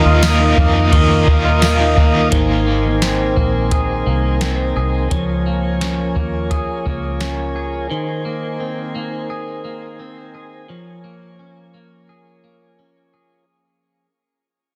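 A bright, twangy clean electric guitar sits up front throughout this dream pop excerpt, picking compressed arpeggios through subtle chorus, delay and shimmer reverb. Alongside it, a mellow, flute-like tonewheel organ holds sustained chords, turning through a slow rotary speaker with vibrato. For the opening moments a double-tracked overdriven guitar adds accompaniment, drenched in tremolo, lush chorus and shimmer reverb, before dropping out at 2.8 seconds. A dark, round, foam-muted fingered bass and a soft vintage rhythm box with a deep kick, crisp snare, metallic hats, tambourine and ride carry a straight 86 BPM pulse in Ab major, the drum machine ending at 7.4 seconds and the bass soon after. The harmony moves from Ebsus2 to alternating Abadd9 and Db6 chords as the piece fades out from 2.3 seconds, leaving an ethereal, blissful haze inside a dense, heavily limited modern master with light digital ambience.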